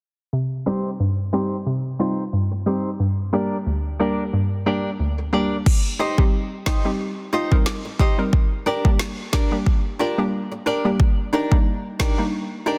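A hollow, bouncy square-wave pluck with a detuned, chorused tone and a sub octave opens this sultry, tough dancehall excerpt in C minor at 90 BPM, pumping under sidechain, with a filter sweep running until 5.7 seconds, and a bright, fingerpicked flamenco guitar enters at 0.7 seconds with arpeggios full of finger squeak. At 5.7 seconds an electronic afro-pop drum kit arrives up front, its deep kick, woody snare and crash all overdriven, while the chords move from Cm to Gm and settle on Ebmaj7. The mix is dense and heavily limited, with light reverb and a low-pass filter softening the top.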